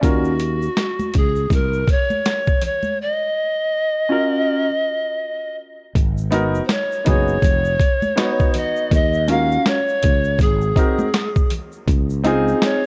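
A swung 81 BPM boom bap groove in 4/4 drives this cool, nocturnal jazz-hop excerpt in Eb minor, its gritty, pitched-down drum kit thumping up front while a hushed egg shaker and hard-handed congas sit in the background. A growly fretless electric bass and a clear, intimate grand piano with audible action noise carry the chords from Ebm9 through Abm7 and Ab7 to Dbmaj9, with a break arriving at 3.0 seconds and the second section beginning at 6.0 seconds. Over them a breathy bamboo pan flute sings a reedy, vibrato-laced melody, all set in a small room and coloured by worn cassette tape with warbly pitch drift.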